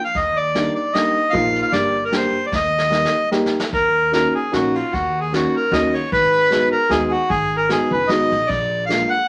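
Bittersweet and whirling, this swung musette waltz in 3/4 at 151 BPM is cut from a longer piece and shifts from Eb major into Eb minor at 3.7 s. A reedy, up-front accordion carries the melody over a dark, woody upright piano, while a pizzicato upright bass with steel strings and a vintage brush drum kit with a punchy kick, dark cymbals and a rolled-off top keep the pulse. A drum fill leads into the minor turn, and the sound sits in a wet studio reverb.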